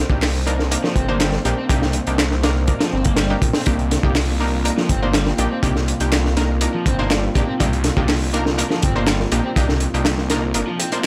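A dark, detuned analog pad with chorus and sidechain pumping sits in the background over a thick, swirling saw bass with phaser, opening this swaggering, energetic breakbeat excerpt at 122 BPM in C minor on a Cm7 chord. A gritty, saturated breakbeat kit with a punchy kick and high-tuned snare drives up front alongside tape-warm electronic handclaps, while bold, bright orchestra-hit-like synth stabs punch in with reverb and tape echo. From 0.8 seconds an overdriven, double-tracked electric guitar riff with tape echo crunches behind the mix, and the kick drops out at 10.6 seconds as the bass stops.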